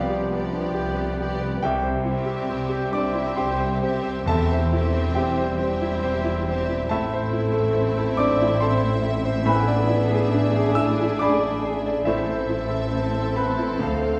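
A clear, deep-voiced concert grand piano leads this passionate, brooding romantic excerpt for piano and orchestra at a rubato 69 BPM in 3/4, its melody set over lush bowed violins, a smooth background layer of violas and second violins, dark distant French horns holding sustained chords, expressive cellos and double basses with the basses sliding in portamento, and a very quiet, round timpani part from 4.3 to 5.5 seconds, as the music shifts from C major to A minor at 6.9 seconds within a reverberant recital-hall space.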